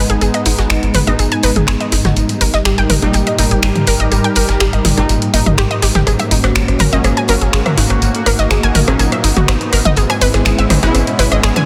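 A melodic techno build-up at 123 BPM opens on an airy, evolving pad holding sustained chords with chorus, a tight sawtooth sequencer bass on G#1 and a swarming, tense drone, moving through G#m, D#/G#, F#/G# and E/G# in a driving, melancholic mood. A punchy analog drum machine sits up front with finger snaps, hi-hat, rim click, toms and a soft-clipped snare, backed by a very quiet loose acoustic kit of hi-hat and snare in a small pumping room, while a round, detuned analog pluck plays arpeggios through chorus and delay. Brassy, wave-folded synth stabs arrive at 1.1 s with chorus and delay, a very quiet electronic riser enters at 2.6 s, and the dense, heavily limited master carries light reverb.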